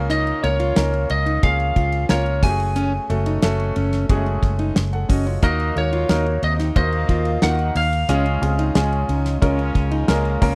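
A steady, straight 4/4 pulse at 90 BPM anchors this short excerpt of anthemic, hopeful piano-driven pop in Db major, with a damped 1970s drum kit sitting up front on a tight kick, fat snare, hi-hat and dark ride cymbal. A round, punchy muted electric bass, foam-dampened and amped, carries the low end, while a clear baby grand piano with short sustain supplies the accompaniment through a progression from Bbm/Db to Gbmadd9, Ebm and finally Db. A fingerpicked, full-bodied jumbo steel-string acoustic guitar plays a riff in its middle register, and a twangy, slightly broken-up lead guitar, compressed and picked, sings the melody up high with a slapback echo until 9.1 seconds. At 5.8 seconds a French horn section enters in the background as a second line, soft in attack with light vibrato in a classical style. The sound is a dry, close 1970s-style studio recording with little reverb.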